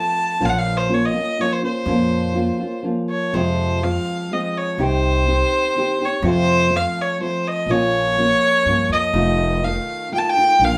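A lone bowed violin and a nylon-string guitar open together at 0.0 s in this passionate, dramatic mariachi passage, cut from a longer piece in 3/4 at 124 BPM in Bb harmonic minor, tuned to A4 = 441 Hz. The violin carries the melody between C5 and A5 with a nasal, earthy tone and light vibrato; it sits up front in the mix yet sounds somewhat distant. Beneath it the thumb-plucked classical guitar gives full-bodied, dark accompaniment from F2 to G4, also up front. A pizzicato upright bass on gut strings joins at 0.4 s, thumpy and woody, moving between F1 and G2. The harmony starts on Bbm, and a second section begins at 3.3 s that passes through Fm, Cm and F before returning to Bbm and landing on F7. The trio sounds like a band playing live in one room, with a short, wet studio ambience around them.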